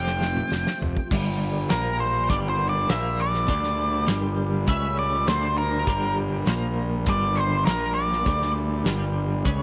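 A roomy studio ambience frames this dark, trippy psychedelic rock excerpt in G minor at 101 BPM, where a damped 70s kit with a fat snare opens on a fill under a brief jingly tambourine, fuzzed punchy bass and a bright, twangy twelve-string riff with tremolo churn beneath an octave-fuzz lead guitar whose distorted, tape-echoed solo begins at 1.1 seconds, as a very quiet rotary-spun tonewheel organ and a reedy, breathing pedal harmonium drone enter behind it over chords moving among Gm, Bb5 and D5.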